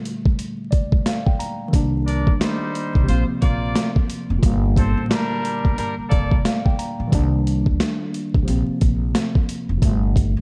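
A gritty, compressed sampler-style drum kit sits up front in this reflective boom-bap hip-hop excerpt, its thumpy kick and high-tuned snare carrying the roomy sound of a large space under a shuffling swing. A worn, slightly out-of-tune tine electric piano opens with the drums, clean and direct, moving through moody chords in G minor with filtering that trims its edges. A woody pizzicato upright bass with steel strings enters at 1.7 seconds and holds the low end. A clear jazz-style trumpet section with light vibrato and soft attacks adds ensemble stabs from 2.1 to 6.4 seconds, filtered and trailed by analog delay. The dark, dry production is laced with vinyl crackle, giving the loop a dusty, late-night feel.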